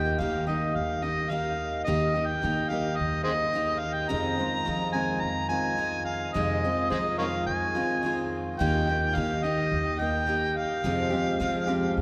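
In a straight four-beat pulse, this haunting, intimate acoustic folk passage, cut from a longer piece, sets a gritty, overdriven harmonica up front, playing a jazz-inflected solo melody full of vibrato, scooped notes and tongue slaps, over a picked steel-string acoustic guitar and a woody pizzicato upright bass moving between Eb and F minor chords, all sounding through the long, cathedral-like reverb of a church or concert hall.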